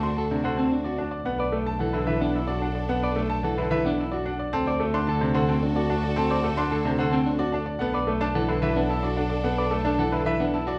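A clear, intimate baby grand piano plays the melody with audible action noise and long sustain, set over a bright concert grand's brilliant, deep-bassed accompaniment, a lush, bowed violin section sustaining smooth chords, and a single bowed double bass up front, in a meditative, hypnotic minimalist classical pattern at 110 BPM in 3/4. From 0.2 s an electric guitar at the edge of break-up adds fingered arpeggios, while the harmony alternates between D and Bm7. A moderate recital hall reverb frames the dark, warm production of this passage, cut from a longer piece.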